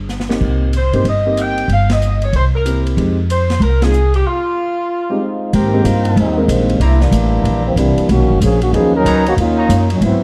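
Big band swing in a swinging, brassy mood, cut from a longer piece, with a woody pizzicato upright bass up front, an airy drum kit with a punchy kick, and an intimate upright piano whose action noise is audible. A mellow saxophone section with vibrato carries the melody through band accents and a break, and then at 5.5 s a close-miked trombone section takes a solo while a tight trumpet section adds stabs. The production is dark, with light reverb.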